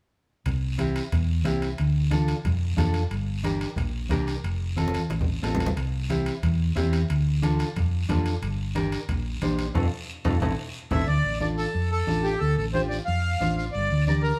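A round, dark hollow-body electric bass sits up front in this driving, passionate cumbia, fingered and carrying the groove from 0.5 seconds at a brisk 181 BPM in 4/4. Around it, bright, low-tuned congas with a thin skin sit in the background, a raspy guiro scrapes along, and ringing metal-shell timbales add drum fills before dropping out at 11.0 seconds. A clean, mellow electric guitar supplies fingered accompaniment over a D minor progression that cycles through C, Dm, Gm and F before touching Am. During a band accent, a reedy accordion with a slow beating quality steps forward at 10.9 seconds to take the melody. The group plays live together in a moderate stone room whose reverb gives the whole performance a natural, roomy sound, and the recording is cut from a longer piece.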